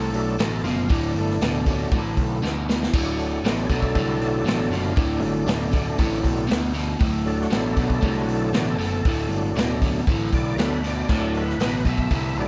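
Raunchy and swaggering, this blues rock power trio and southern rock excerpt in D major struts at 118 BPM in a straight 4/4, with a gritty, thick overdriven tonewheel organ taking the solo over sustained chords through a slow rotary speaker and chorus vibrato, while a bright, double-tracked overdriven electric guitar riff sits up front, a growly picked electric bass drives underneath, and a vintage drum kit with dark cymbals, a punchy kick and a rolled-off top enters at 0.1 seconds and throws in a fill at 2.4 seconds, all in a natural studio room with light reverb.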